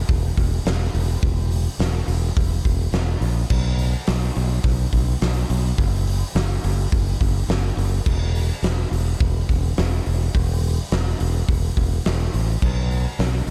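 A dry sound with little reverb frames this short rock cut, leaning toward shoegaze and dream pop with a hazy, wistful mood at 105 BPM in a straight 4/4. A bright, punchy fingered electric bass sits up front in a low register, paired with a big acoustic rock kit heard in a bright, stony room, where a fat snare, a punchy kick, hi-hat and crash cymbal sit just as close. Both parts play together from 0.1 to 13.5 seconds through a single section, a stripped-down rhythm bed that hints at a larger piece.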